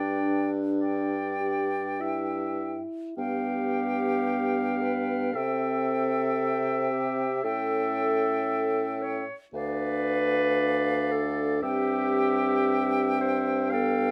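Rubato in 4/4, this tender classical slow romantic movement for wind quintet, cut from a longer piece, sets an airy, bright concert flute melody with crisp attack and vibrato above a distant, roomy oboe second line, clear clarinet and mellow, punchy French horn accompaniment, and a warm, up-front bassoon bass with light vibrato, all heard in a moderate studio reverb.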